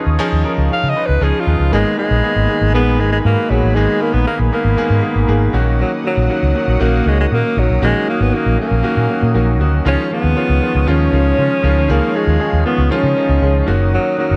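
A straight 4/4 pulse at 118 BPM drives this moody, urgent pop piece in G# dorian, cut from a longer work and moving from C#add9 through G#madd9 and F#6/A#. A breathy, whispered alto saxophone carries the melody up front with vibrato, scooped notes and a digital delay, taking a solo spot in the opening 1.7 seconds, while a clear, polished concert grand with audible action noise and long sustain accompanies it and a round, foam-muted vintage electric bass enters at 0.1 seconds. Behind them, a swirling, detuned sawtooth analog pad holds mellow sustained chords through phaser and chorus, all set in a small, lightly reverberant room with a dark production.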